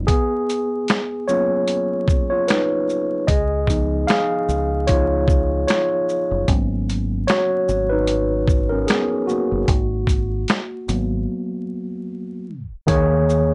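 The recording has a dusty, lo-fi sound, with vinyl crackle, moderate studio ambience and a dulled top end, and this excerpt is cut from a longer piece. It is reflective, nostalgic lo-fi hip hop at 75 BPM in 4/4, with a swung sixteenth-note feel in G# dorian, moving through G#m11, C#7 and G#m9 chords. A mellow, clean tine electric piano sits up front and carries a solo through most of the passage, while a deep dub fingered electric bass adds a dark, round, punchy low end. The sampler-style drum kit is compressed and gritty, with a thumpy kick, a medium-tuned snare, hi-hat, shaker and finger snaps, and it has a tape-warm, up-front presence. Breaks fall in the opening seconds and near the close, and a tape stop arrives at 12.5 seconds, just before a closing D#7sus4 chord.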